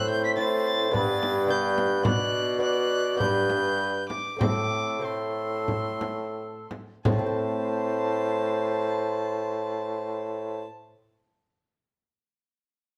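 A solemn, rustic renaissance-style consort dance opens with a gut-string violin carrying the melody high above a mellow, soft-edged cor anglais second line, a delicate fingerpicked lute with double gut strings, and a clear, up-front bassoon bass, while a small, bright frame drum played with hard hands joins at 0.9 s and stops at 7.4 s as the music slows through its opening section, all set in a stone room heard from further back in this short cut from a longer piece.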